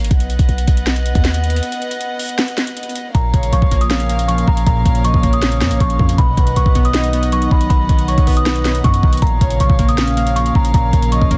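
Hard-hitting and melancholic, this half-time trap excerpt in Bb phrygian at 158 BPM opens on dark, sul tasto strings holding soft chords over a deep, boomy 808-style bass and an up-front trap kit with a knocking kick, sharp snare and metallic hats, with a break at 1.6 seconds. At 3.1 seconds a delicate, bell-like celesta melody enters alongside glassy digital keys with chorus and a low-pass filter, and at 3.3 seconds a breathy, flute-like synth lead with tremolo and digital delay joins in the background. The dry, dense, heavily limited master carries a layer of vinyl crackle as the chords move between B and Bbm.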